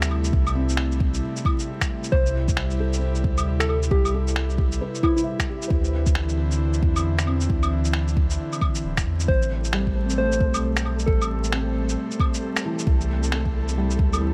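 A light reverb and a bed of vinyl crackle frame this wistful, melancholic excerpt of future garage, which moves at 134 BPM in 4/4 with a 62% swing on the sixteenths, in A minor and tuned to A4 = 442 Hz. A layered, deep electronic kick sits alongside muffled, pitched-down finger snaps, shaker and claves with a tape-warm, compressed character, while a round, up-front dub sub bass anchors the low end under sidechain pumping. An airy, breathy pad with chorus holds sustained chords, and a felt-muted upright piano, dark and intimate with audible action noise, plays accompaniment in the background through delay and the same pumping. A gentle, warbling FM synth lead with a keys-like, struck tone carries the melody in two short phrases, first entering at 2.1 seconds, colored by chorus and digital delay. From 9.6 seconds a flickering, grainy granular texture drifts in quietly behind the rest, as the harmony moves through C6, Am9/C, Dsus2 and Am9 before returning to C6.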